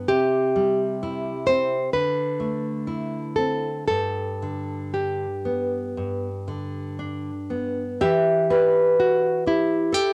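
Warm and serene, this short excerpt from a longer romantic duo for two nylon-string guitars moves in a relaxed rubato around 56-66 BPM in G major. One fingerpicked guitar carries a dark, fresh-stringed accompaniment from the opening, while the other, brighter and just as full-bodied, enters with the melody at 0.1 seconds; both sit up front with a deep classical tone. The chords drift from C through Dsus2 to G before a turn to Em at 8.0 seconds, all colored by moderate studio reverb and the soft grain of a home cassette recording.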